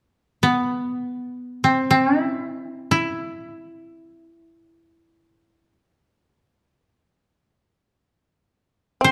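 This fragment of Japanese traditional music unfolds in free time with an austere, still mood, its koto melody, played with fingerpicks, entering at 0.4 s and sounding dry and woody up front across a range from B3 to C5, tuned to A4 = 443 Hz. At 9.0 s a plectrum-plucked, fretless shamisen adds a brief second line on C4, its bright, buzzing, percussive tone placed up front. A moderate recital-hall reverb and a dark production frame the whole passage.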